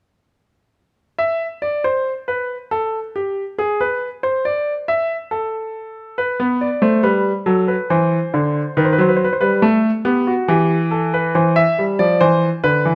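In a steady, straight triple metre, this brief excerpt from a longer piece offers a solemn, serious baroque-style two-part invention for solo grand piano, its natural, up-front tone captured by close, detailed microphones with light reverb as the piano enters at 1.2 seconds and moves through shaded harmonies from F#madd11 and Cadd9 to B7/D#, Em and a closing Dm13.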